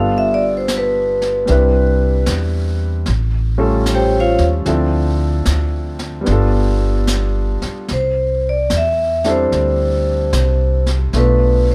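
Romantic and late-night, this swung jazz ballad excerpt features a metallic, ringing vibraphone, struck with medium hard mallets with the motor off and heard dry and close, soloing through the first 7.9 seconds over warm grand piano chords and a woody pizzicato upright bass, both up front, while a brushed kit with a high-tuned snare and hi-hat sits low in the mix from 0.7 seconds, all captured in a close, detailed sound.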